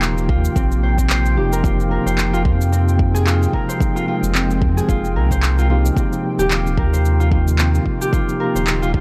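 A swung 16th-note groove at 111 BPM in 4/4 carries this earthy, mystical organic downtempo piece in F minor, with layered electronic handclaps and shaker and a deep electronic kick that enters at 0.3 s, anchored by a round, up-front sine sub bass. A mellow, clean tine electric piano with tape echo and sidechain pumping plays the accompaniment. A fingerpicked, ringing Celtic harp adds arpeggios through tape echo, while an airy, breathy, detuned pad with chorus and pumping holds soft chords in the background over an Eb to Fm9 to Eb progression, all in a dry, gritty hardware sound with digital ambience.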